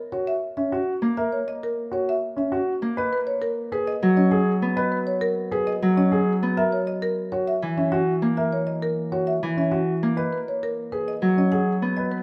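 This classical, minimalist pattern music excerpt is cut from a longer piece and moves at 100 BPM in a straight 3/4, set in C# dorian with the tuning at A4 = 442 Hz, its mood both urgent and meditative. A marimba played with medium hard mallets carries the melody from 0.1 s, its padauk bars giving a woody, percussive tone with a boxy, small-room character. Alongside it from the same moment, a concert grand piano spins arpeggios in the middle register, its sound warm with deep bass and long sustain. A Celtic harp joins at 1.0 s with fingerpicked accompaniment in a lower register, ringing and placed close up, and it sits as the most prominent of the three parts. The harmony alternates between C#m6 and G#m9 across the single section, and the whole is set in a moderate recital hall reverb captured by close, detailed microphones.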